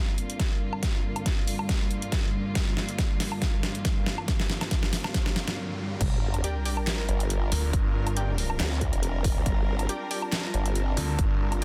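Snarling, detuned saw bass growls up front from 7.5 seconds, stacked on a formant-sweep wobble bass that arrives with the drop at 6.0 seconds, driving this heavy, aggressive half-time dubstep cut at 139 BPM in G minor. Before that, a rich bowed string section holds sustained Gm7 chords under a nostalgic, warbling lo-fi pad, while a very quiet riser and sub drop, an overdriven punchy kick and a layered kit with a deep snare, handclaps, hi-hat, woodblock and crash build through a drum fill to a brief break. Once the drop hits, bold orchestra-hit-like stabs with 12-bit grit and digital delay cut in over the dense, heavily limited, dry mix.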